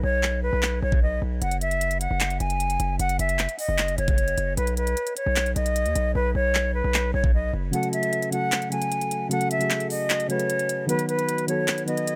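A half-time trap groove at 152 BPM in 4/4 drives this brooding, hard-hitting hip hop excerpt in F# dorian, cut from a longer piece and tuned slightly flat at A4 = 436 Hz. The trap drum kit enters at 0.2 seconds with a knocking kick, crisp hi-hats and handclaps, and the hats drop out between 6.2 and 7.7 seconds before the kick falls away from 7.7 seconds onward. A breathy silver concert flute carries the melody throughout with a straight, tongued, close-miked tone, while a saturated, distorted 808-style bass hits with a heavy, aggressive attack under the opening chords until 7.7 seconds. At that point soft electric-piano-like synth keys enter as accompaniment, their round, warbling, vintage sound thickened by chorus as the harmony moves from F#m to B. The mix is dry and close, with every part sitting up front.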